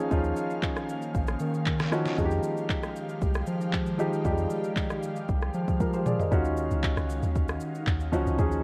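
Amapiano at 116 BPM in a soulful, hypnotic mood, this excerpt sets an up-front concert grand piano with deep bass comping over Ebm9 and Fm9 chords, an ethereal, airy pad with ensemble chorus and built-in reverb sustaining beneath, and a smooth electronic R&B kit of soft kick, deep snare, handclaps, rim click, shaker and toms, while a thick, saturated sine sub bass holds the low end until a drum fill at 5.8 seconds hands over to a round, dark, percussive log drum bass at 6.3 seconds, all under light reverb and a worn, warbling cassette tape pitch drift.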